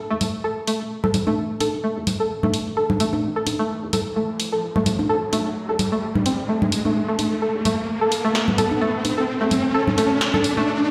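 Quirky and cool, this minimal techno build-up moves at 129 BPM in 4/4 with a 56% swing on the sixteenths, cut from a longer piece and resting on an A5 chord. A bright, twangy resonator pluck with a string-like, nasal edge and a noise layer carries the riff from A3 to A4, sitting up front with chorus and digital delay while a filter sweep runs across it for the whole passage. Beneath it, a round, deep analog bass with a dark, sine-like tone stays very quiet between E1 and E2. A punchy, tape-warm analog drum machine supplies hi-hat and snare, both high-passed, alongside overdriven congas fed through delay. An electronic riser enters at 0.4 seconds and builds to the end at 10.9 seconds, all placed in a wet plate reverb and the boom of a big sound system in a bare room.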